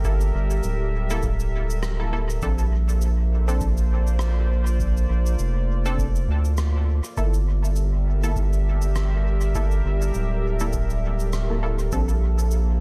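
A swung 4/4 groove at 101 BPM, with a 56% lilt on the sixteenths, sets a meditative, deep ambient dub cut from a longer piece in G dorian, tuned to A4 = 438 Hz. A round, mellow analog bass sits up front, its wave-folded tone evolving beneath a very quiet, dry electronic kick with a tape-warmed thump, both running until 12.1 s for the kick and 12.8 s for the bass. Cabasa and rim click add a faint acoustic shimmer in a big-room space, thrown into dub echo. A warbling, nostalgic lo-fi pad holds sustained chords with a slow attack and long release, softened by chorus and its own reverb. A muted, detuned chord stab plucks short decaying hits through chorus and dub echo, tracing the movement from Gm69 to Bbmaj9 and back. The echo-heavy mix settles into a small room ambience, hazy and unhurried.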